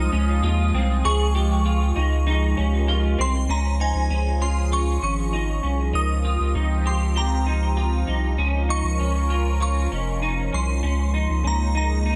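A straight 4/4 pulse at 98 BPM carries this dreamy, blissful dream pop excerpt in Db lydian, cut from a longer piece. Up front, a deep, thick saturated sub bass with a fast attack holds the low end, while a swirling, warbling vintage analog pad, detuned and slow to bloom, sustains chords through phaser and chorus. A clean, picked semi-hollow electric guitar plays arpeggios, and a bright, shimmering FM bell with a long, decaying tail carries the melody high above; both guitar and bell are wrapped in ensemble chorus and dub echo. Tucked very quietly beneath them, a mellow, metallic vibraphone with soft mallets and fast motor vibrato rings in a boxy small room until 10.5 s. The harmony opens on Dbmaj7, then from 3.5 s moves through Db, Eb6/Db, Bbm/Db and Absus2/Db, each chord voiced over Db, all set in a lightly reverberant, echo-heavy mix.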